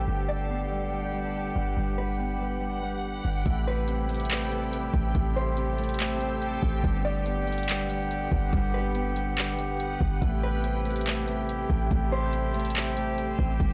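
A half-time 4/4 groove takes hold at 3.5 seconds, when an electronic, overdriven R&B kit of soft kick, crisp hi-hats and handclaps arrives up front in this hazy, ethereal stretch of atmospheric cloud-rap hip hop that drifts between Gmaj7 and Am7. From the opening, a deep, boomy 808-style bass with tube saturation sits under a distant, lightly vibrato brass ensemble pumping with sidechain, while a ringing, fingerpicked Celtic harp plays arpeggios and a dark, clean electric guitar carries the melody through chorus, filter and delay. A reversed, granular swelling texture lingers faintly behind, and the recording as a whole sounds dry and blown-out.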